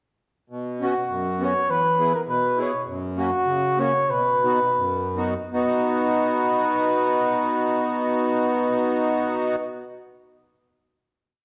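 A dark, roomy production with a generous recital-hall reverb frames this short, festive alpine folk piece for a dance band, moving in a lightly swung 2/4 in B major at around 73-102 BPM and slowing down from 2.9 to 5.5 seconds before settling onto a final chord. The accordion, reedy and sweet with its light tremolo tuning, enters at 0.5 seconds with off-beat triad chords, and the mellow, distant flugelhorn joins at 0.8 seconds with a classical-style melody built from song-like motifs. The jolly harmony moves from Bsus2 through E and F# before resolving home to B.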